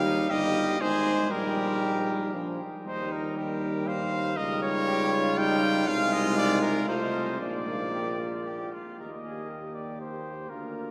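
Heard through the long, wet wash of a cathedral's reverb, this brief recording carries lossy compression artefacts and is cut from a longer classical brass quintet piece. The mood is warm and stately, moving in a flexible, rubato three-time. Up front, a trumpet with a rounded tone carries the melody in its upper register, while a second trumpet, clear but distant and roomy, sings a lower second line beneath it. A mellow French horn with light vibrato and a smooth top joins a close-miked trombone in the accompaniment, and a tuba with a vintage colour anchors the bass. All five play together throughout the roughly 10.9 seconds, the harmony moving through dignified cadences before settling back onto its home chord at 9.0 seconds as a new passage begins.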